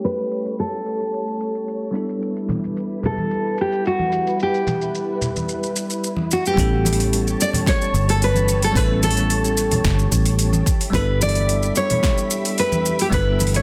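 Sunset chillout at 110 BPM with a smooth, warm mood, this excerpt opens with an up-front, full-bodied nylon-string guitar carrying the melody over a bell-like tine electric piano with delay, a silky, vintage string machine with ensemble chorus, and an overdriven deep house kit of shaker, metallic hats and punchy snare. Filter sweeps run across the drums and strings through the first 6.6 seconds, and distant congas join at 2.5 seconds. At 6.6 seconds a round, foam-muted fingered electric bass and a deep, overdriven electronic kick drum arrive as the chords move between A7 and G6 in a dense, heavily limited mix with moderate room reverb.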